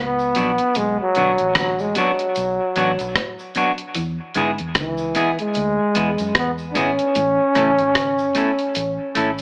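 A breathy, whispered trombone carries the melody from the outset with vibrato, dub echo and plate reverb, over a twangy clean electric guitar playing arpeggios in the background and a dark, foam-muted fingered bass that sounds round and punchy. This is a serious, meditative roots reggae excerpt at 75 BPM in B dorian with a swung sixteenth feel. A very quiet cabasa, a dry, tight-kicked drum kit with hi-hat and rim click, and an up-front hollow-body electric guitar with dub echo join within the first half second, moving through Bm, E and A, all framed by an AM radio sound in a reverberant studio.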